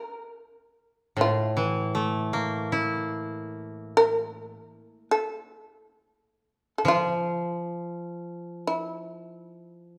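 A recital hall lends this passage a generous, wet reverb that lingers for about 1.4 seconds, and both instruments sit up front in the sound. It is Japanese traditional chamber music in free time, tuned to A4 = 435 Hz, with a solitary, austere mood. The shamisen carries the melody from the very start, its bright, plectrum-plucked, fretless voice percussive and buzzing as it moves between E4 and Bb4. At 1.2 seconds the koto enters beneath it as accompaniment, played with fingerpicks and sounding woody and dry, spanning A2 to E4 and sitting a little lower in level than the shamisen. Cut from a longer piece, the 10-second passage stays within a single section.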